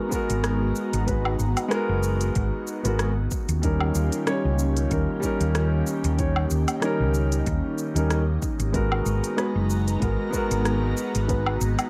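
The recording has a dry, gritty hardware character set in a digital ambience, giving this short cut from a longer piece a lived-in edge. It is a wistful sunset chillout groove at 94 BPM in 4/4, with a gentle 55% swing on the sixteenths and a G# dorian color, moving from G#m9 to D#7 at 3.3 seconds and back to G#m9 at 8.7 seconds. Up front, a dark, mellow baby grand piano plays vintage-toned accompaniment through an analog delay, while an airy, breathy pad holds soft, detuned chords with a slow attack and long release, shaded by chorus, phaser and a 12-bit sampler grit. The hollow-body short-scale electric bass sits prominently, round and punchy with an amped, shadowy tone. Underneath, a layered, produced deep house kit of cabasa, smooth hi-hat, rim click and woodblock joins a deep electronic kick from 0.1 seconds to carry the relaxed pulse.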